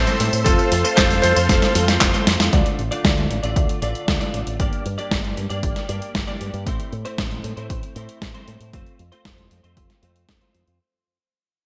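An electric grand piano with a clangy, cutting tone carries a brief melody over phased string-machine chords, twangy clean guitar stabs and a fingered bass through an envelope filter, while an overdriven, sampler-style drum machine with gated reverb and a punchy analog kick drives this melodramatic, bittersweet italo disco cut in D minor at 116 BPM, a drum fill at 1.5 seconds leading into a fade-out from 2.5 seconds as the piano and strings drop away and the chords move through Dm, Gm and Am in a lush hall of bright 1980s-style digital sheen.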